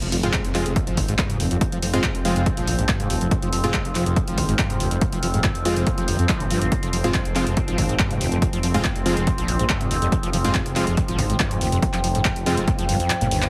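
An impact and a squelchy, screaming acid line open this dark, industrial peak-time techno cut in F minor at 141 BPM, driven by a punchy layered kick, overdriven analog handclaps and hi-hat, a thick beating detuned saw bass, airy supersaw stabs with tape echo, and an overtone-sweeping drone entering at 0.9 seconds, all under a heavily compressed radio sound until the kick drops out for a drum fill at 13.1 seconds.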